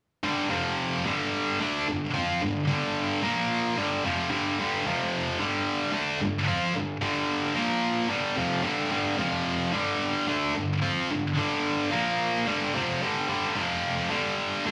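Swaggering and energetic, this rock excerpt in a straight 4/4 features a single heavy high-gain electric guitar in a solo role from 0.2 to 14.7 seconds, its bright, distorted, picked tone double-tracked and placed up front. The guitar cycles through G5, F5 and Bb5 power chords, ranging from F2 to F4. A large studio reverb adds a wet, roomy sheen, giving the feel of a band playing live in one room, and the passage is cut from a longer piece.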